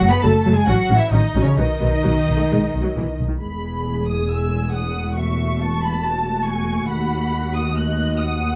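An up-front, con sordino double bass section anchors this restless, dramatic fragment of a quick classical-period movement for string orchestra in E major, taken with rubato at 128-141 BPM, as muted violins carry a veiled melody and a second line over a distant viola accompaniment and a close cello bass, every section bowed and muted in a dark, lightly reverberant studio sound while the harmony moves from F#m through B to E and on to B7/D#.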